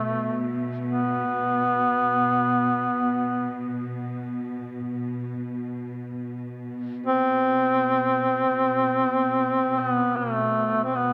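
This Caucasian folk lament moves in free time, with a longing, solemn mood, tuned to A4 = 439 Hz and cut from a longer piece. A clear duduk carries the melody as the up-front solo voice from 0.0 to 11.1 seconds, staying within A3 to C4 and shaped with vibrato and scooped notes in a vintage folk style. Beneath it, a studio cello section holds a bowed drone on B2 for the same span, its ensemble tone rich, biting and focused, with vibrato of its own. The cellos sit well below the duduk in the balance, giving the solo line a steady floor. A moderate cathedral reverb with a 5.2-second decay surrounds the performance and lends it a spacious air.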